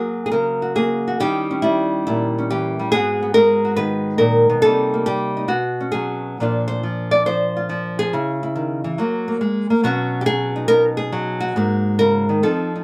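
The rhythm swings its eighth notes in a relaxed 4/4, yet the time bends freely in rubato. This is a short passage of solo jazz lifted from a longer piece, with a relaxed, playful mood. A lone nylon-string guitar plays the whole 12.8 seconds, fingerpicked and acoustic, sitting up front with a small, warm body. It ranges from G#2 up to D5 through a colourful run of chords, opening on F#add9 and passing through D#7b9, G#m9 and B69 before coming to rest on G#sus2. Moderate studio reverb gives the guitar a touch of room around it.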